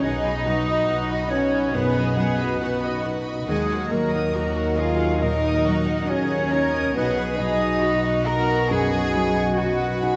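Bittersweet and sorrowful, this cinematic orchestral film-score excerpt drifts in rubato around 69 BPM over B and E-flat minor chords, with a floating, sul tasto violin section carrying the melody while a second violin line, an airy, hollow concert flute and a soft clarinet weave countermelodies above a rich cello section, a distant double bass section, dark, woody violas, a felt-muted upright piano with audible action noise, a faint ringing fingerpicked harp and mellow French horn chords entering at 0.1 seconds, all bathed in the wet reverb of a scoring stage.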